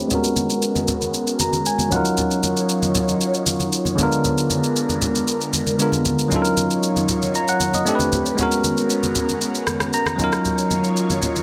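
Late-night and deep, this amapiano excerpt in Eb minor moves at 116 BPM in a straight 4/4, with a bell-like tine electric piano carrying bright, clean chords through Abm11, Ebm9 and Bb7b9/D and adding short fills at 1.1 and 9.7 seconds, over an airy, breathy pad softened by chorus, phaser and low-pass filtering, up-front electronic shaker and rim click, and thin-skinned, low-tuned congas played with soft hands, all set in light digital ambience under a filter sweep that runs throughout.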